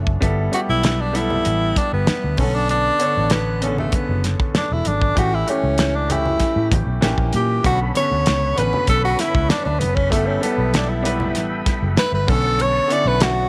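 A breathy, close-miked tenor saxophone with tape echo carries a bittersweet, cinematic solo over lush 1970s-style soul, backed by clear baby grand piano, a round, foam-muted electric bass, a damped drum kit with fat snare and tight kick, very quiet ringing congas, a brief metallic vibraphone touch at the start, and a tonewheel organ with slow rotary speaker that joins in the background at 7.6 seconds.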